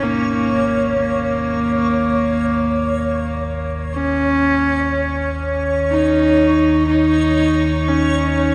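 A clear, husky horsehead fiddle carries the melody up front, its single bowed voice biting yet earthy, gliding between notes with portamento and trailed by delay. This short excerpt of dark ambient drone feels ominous and vast, set in a huge, wet reverberant space with a 7.6-second decay. Beneath the fiddle, a deep, rumbling synth drone fades in over the full 8.5 seconds, its wave-folded tone slow to bloom and long to release. A reversed, granular texture hovers high above with a bright, dreamy shimmer. For only the first second, very quiet old church bells ring close and dry, their bronze clang struck by an iron clapper and shimmering with beating overtones.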